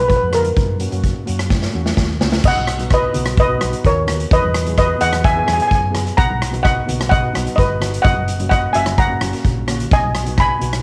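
A straight, bouncy four-beat groove drives this festive calypso: a short cut from a longer piece, recorded at home on cassette in a small room. Up front, a steel pan struck with hard rubber sticks carries the melody with a shimmering, vintage, band-limited ring, while a second steel pan played with medium rubber sticks sits in the background, mellow, soft and smooth, adding accompaniment through a cassette-tape coloring. Underneath, a hollow-body short-scale electric bass, played with the fingers and amped, gives a round, dark low end. A street-band drum kit, polished and airy with a big-room feel and also tape-colored, sits prominently with a boomy kick, medium-tuned snare, rim clicks, hi-hat and dusky crash cymbals, while very quiet congas, thick-skinned and played with soft hands, add a faint vintage pulse. A drum fill at 1.5 seconds leads into a new section at 2.4 seconds, where the harmony settles into Bmaj7, Emaj7 and F#6 chords, and another brief fill at 9.6 seconds turns the music toward a closing B6.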